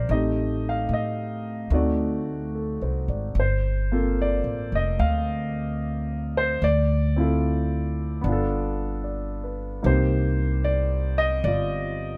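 A grand piano and a plucked upright bass begin together, setting a tender, intimate mood in this brief jazz ballad cut from a longer piece. The piano plays accompaniment in the middle register, its tone polished and present, while the acoustic bass sits low with a woody steel-string sound. Both instruments are up front, captured by close, detailed microphones in a dry space that keeps every note clear. The gentle swing moves through Am7b5 and D7b9 before settling on Gm11 at 3.4 seconds, where a new section opens. From there the harmony passes through Dm7 and G7 and arrives at Cm9 at 9.8 seconds, with both parts playing through to the end at 12.2 seconds.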